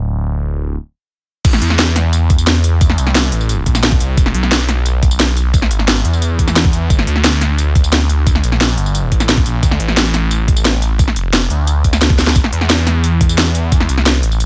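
A straight 4/4 pulse at 176 BPM drives this mechanical, aggressive excerpt of dark technical drum and bass: a thick, swirling, saturated detuned saw bass with phaser and sidechain pumping opens alone, a stop at 0.8 seconds sets up the drop at 1.4 seconds, where a knocking layered electronic kick and an up-front kit of cracking snare, crisp hi-hats, crash cymbal and tambourine join in, with a drum fill at 12.2 seconds, all heard in a dry mix with little reverb.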